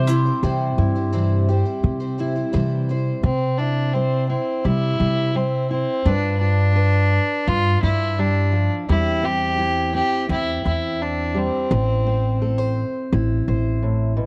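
A reedy, gut-toned bowed fiddle carries the melody up front through a cassette-tape haze and tape echo until 12.8 s in this anthemic, warm indie folk piece, over a woody, thumpy pizzicato upright bass and a dark fingerpicked steel-string guitar, while a shimmering, octave-doubled twelve-string guitar adds full-bodied picking only until 3.3 s in a lightly reverberant home recording.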